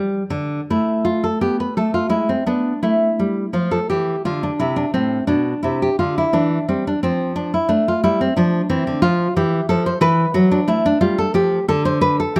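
Radiant and flowing, this fragment of a longer baroque-style classical dance in 3/4 unfolds on a solo nylon-string guitar, fingerpicked with a full-bodied, deep tone and the occasional finger squeak, its uneven beats and rubato giving the line a free, breathing feel. Close, detailed microphones place the guitar up front with light reverb, while the harmony moves through colourful chords such as G13/A, Amadd9 and Fmaj9#11/E before settling on G5 at 11.0 seconds.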